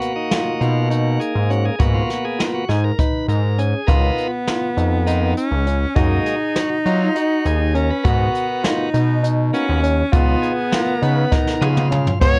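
Driving and intricate, this progressive instrumental in 7/8 is led by a full, shouting tonewheel organ solo, lightly overdriven through a stopped rotary speaker, over barky tine electric piano arpeggios and a distant, roomy brush kit with dark cymbals, a boomy kick and a fill near the end. A gritty, saturated sawtooth synth bass with oscillator sync enters up front at 0.6 seconds, and a bright, punchy, close-miked alto saxophone with vibrato adds a second line from 3.9 seconds. A clear trumpet appears at 12.2 seconds, and the recording carries light reverb and the warbling pitch drift of worn cassette tape.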